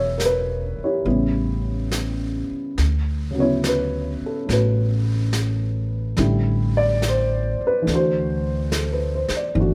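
A dark, mellow upright piano and a plucked upright bass open this short excerpt of a late-night jazz ballad together, setting an intimate mood in D major at a relaxed 70 BPM with a gentle swing in 4/4. The piano sits up front with a short sustain, comping in the middle register, while the bass stays close beside it with a growly, woody pizzicato tone on steel strings. At 0.2 seconds a brushed drum kit joins, its medium-tuned snare and hi-hat sitting further back in the mix and sounding natural in a studio room. The harmony moves from Em7 to A7 before settling on Dmaj7 at 2.8 seconds, then drifts through Am7 and comes to rest on Dadd9. A light reverb gives the trio a soft sense of space.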